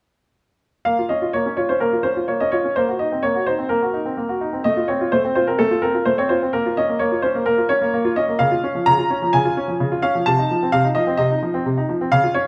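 Serious and dramatic, this short excerpt from a classical-period piano sonatina in 4/4 features a solo baby grand piano with a bright, brilliant, natural tone and short sustain, played up front with a rubato feel between 0.9 and 12.5 seconds, ranging from C3 to Bb5 and moving through minor-key harmonies into a moderate recital hall reverb.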